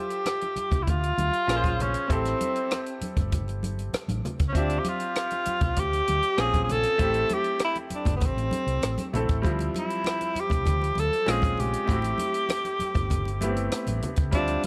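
Set in a small room with light reverb, this bittersweet, smooth 1970s-style soul excerpt moves at 98 BPM in a straight 4/4, circling through Dm11, Bbm7 and Am7. An up-front tenor saxophone carries the jazz-style solo melody with vibrato, scooped notes and a smooth top, over a bright, brilliant grand piano accompaniment. A dry, compact cocktail kit with a punchy kick, hi-hat and rim click sits beneath, ringing medium-tuned congas play in the background from 0.3 seconds, and a dark, round hollow-body electric bass joins at 0.6 seconds.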